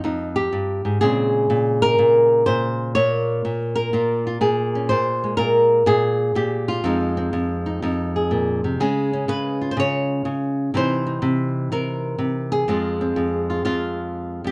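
Late-night and moody, this solo jazz excerpt in F minor swings at 124 BPM in 4/4, carried entirely by a single flamenco guitar that sits up front, fingerpicked and acoustic with a warm tone. Ranging from F2 to Db5, the guitar moves through Fm7, Bbm9, Db and a tense C7#9 before settling on Fm at 12.7 seconds. A moderate club reverb surrounds the playing with a short, roomy ambience.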